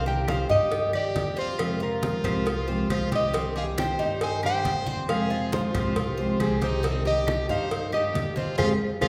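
Warm and danceable, this Cuban son and guajira passage, cut from a longer piece, sets a classical nylon-string guitar on the fingerpicked melody while a brilliant, punchy trumpet adds a forceful second line full of vibrato and scooped notes. A dark, full-bodied steel-string acoustic guitar plays the accompaniment with audible finger squeak, and a metallic Cuban tres picks arpeggios on double strings in the background. A thumpy pizzicato upright bass anchors the low end beneath damped, low-tuned congas struck with hard hands, a round, close cowbell and distant woody claves, all in a wet recital-hall reverb, until the band hits an accent at 8.6 seconds.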